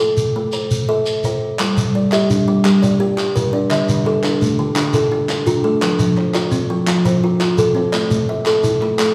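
Southern African traditional music in a warm, rippling mbira-style interlocking cycle at 114 BPM in a straight 12/8 feel, cut from a longer piece, where an up-front, ringing kalimba with a woody, hollow-box fingertip pluck opens alone with arpeggios, a grainy shekere joins at 0.2 seconds, and at 1.8 seconds a second, shorter and softer kalimba adds its own arpeggios, just after a hollow, human group handclap enters at 1.6 seconds, all carried by a wet recital-hall reverb as the chords move from Am through Gm, Dm and F back to Am.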